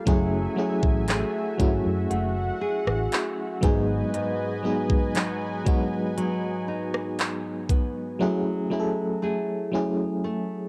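A slow, straight 4/4 trap drum kit at 59 BPM sits up front with a knocking kick, crisp hats, handclaps and rim clicks, setting a longing, late-night mood for this contemporary R&B piece in F# dorian, cut from a longer work and heard through the grain of a home cassette recording. An up-front FM electric piano with tremolo and a mellow, decaying tone carries the chords from F#m9 to G#m7 and back, joined by fingerpicked nylon-string guitar arpeggios with a full-bodied classical depth and a smooth, detuned sawtooth pad with chorus that drops out at 8.2 seconds. A dark, round, foam-muted electric bass plays only until 4.0 seconds, while a delicate, bell-like celesta with analog delay glints in the background from 2.1 seconds.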